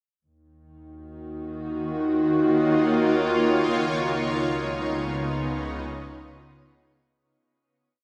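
A shimmering, bright pad carries this brief, reflective ambient piece in free time and Eb minor, its chorus-washed sustained chords floating up front over an intimate bowed chamber double bass section that holds a soft, low root from 0.2 seconds, all set in a deep, spacious reverb as the harmony moves from Ebm7 to Db7 at 3.7 seconds before fading out.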